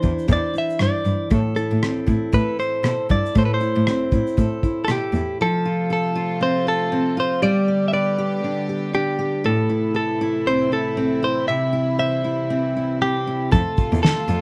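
Easy-going and carefree, this acoustic pop passage moves at 118 BPM in 4/4 with a swung sixteenth feel, as a clean, compressed electric guitar recorded direct carries the melody over a fingerpicked steel-string acoustic guitar, with chords moving from Cadd9 and Am toward F, G, Am and C. A bowed solo cello plays the bass line with airy, sul tasto softness and light vibrato alongside a muffled, cloth-damped drum kit of fat snare, tight kick, rim click and shaker with a gritty, saturated edge; both drop out just before 5.4 seconds, when a soft, floating string section enters with sustained chords, and they return at 13.5 seconds. Light reverb and a dark, warm production keep the guitars and drums up front in this short cut from a longer piece.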